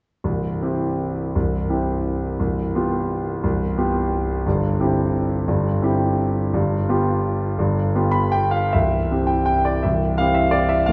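A graceful, playful classical piano waltz in C major and 3/4, taken at a supple rubato that drifts between 137 and 184 BPM, cut from a longer piece. A solo concert grand carries it alone from 0.2 to 10.9 seconds, its clear, open tone reaching down to a deep bass and sitting up front even though the listener seems placed further back in the room. A lush scoring-stage reverb with a 2.1-second decay surrounds the piano as the harmony moves from C through G7 and back to C, where a new section begins at 8.8 seconds.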